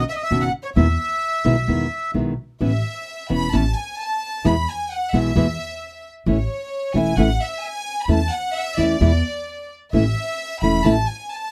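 A clear, floating violin section bowed sul tasto takes the lead at 2.6 s in this playful, passionate rubato tango excerpt in A major at 131 BPM, after a reedy, airy, up-front bandoneon melody ends at 2.1 s, while a small, fingerpicked nylon-string guitar and a woody, growly pizzicato upright bass accompany it in a close, dry and detailed studio sound.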